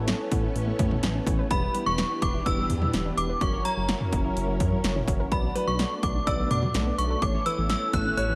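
Melancholic and cool, this synth-pop excerpt moves at 126 BPM in 4/4 with a straight feel in B minor, cycling through Aadd9, Em7, F#7 and Bm7 before returning to Aadd9. Up front, an inharmonic FM synth chime carries the melody high in its range, its ringing, warbling tone thickened by ensemble chorus, tremolo and delay. Beneath it, a dark, detuned synth brass with chorus and phaser plays accompaniment, a silky string machine holds sustained chords in the background, and a very quiet, round pluck traces soft arpeggios. A smooth, nasal synth bass with vibrato anchors the low end, while a punchy analog drum machine, overdriven and sitting prominently in the mix, drives the groove with hi-hat, kick, snare and toms. At 5.6 seconds a polished baby grand piano enters with a second line treated with delay, and light reverb and digital ambience surround the whole.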